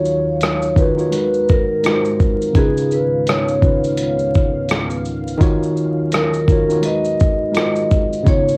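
Lo-fi hip hop with a reflective, melancholic mood at a swung 84 BPM, where a soft-mallet vibraphone carries a ringing, metallic melody with slow motor vibrato and tape echo over a worn, slightly out-of-tune tine electric piano, a deep, detuned analog pad that swells in slowly under chorus, and a gritty, compressed sampler-style kit of thumpy kick, rim click, hi-hat and shaker entering at 0.1 s, all moving through Ebm7, Abm9, Ab13 and Db9 with cassette grit, vinyl crackle and light reverb in this short cut from a longer piece.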